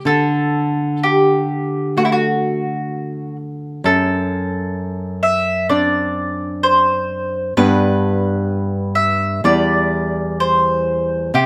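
The rhythm moves freely in rubato around 64 BPM in 4/4, giving this short passage from a longer romantic duo a lyrical, tender sway. In D major, a picked mandolin carries the melody between E4 and E5, its double strings ringing bright yet round and placed up front. A fingerpicked nylon-string guitar accompanies from E2 to F#4, its small, warm tone sitting close beside the mandolin. Both instruments play together from start to finish across the 11.5 seconds. The harmony settles on D, shifts to D7/F# at 3.8 seconds, opens onto G at 7.6 seconds, and reaches C/E near the close, all within a moderate studio reverb that lends a gentle sense of space.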